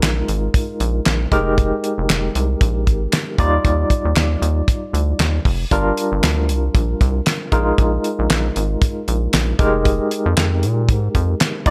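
A damped, dry drum kit with a fat snare and tight kick opens this danceable early-eighties boogie funk excerpt together with a rubbery, nasal square-wave bass and a barky electric piano, lightly overdriven with fast tremolo through a combo amp. The drums carry gated reverb, and crisp group handclaps sit in the background until 11.5 seconds. The swung groove cycles through Bb7sus4, Fm11, Ebmaj9 and Gm7 in a small, lightly reverberant room.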